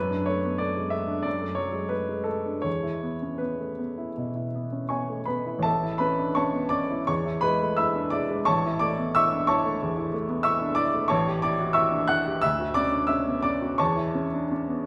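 A clear, intimate baby grand piano with audible action noise carries this lyrical, hopeful romantic character piece in A major, unfolding in a rubato 4/4 at around 78-93 BPM across a range from A1 to F#6, its natural tone set in a wet recital hall reverb heard from further back in the room as the harmony moves from D/F# and E through A, A7 and Dmaj7 to A/E in this short passage cut from a longer piece.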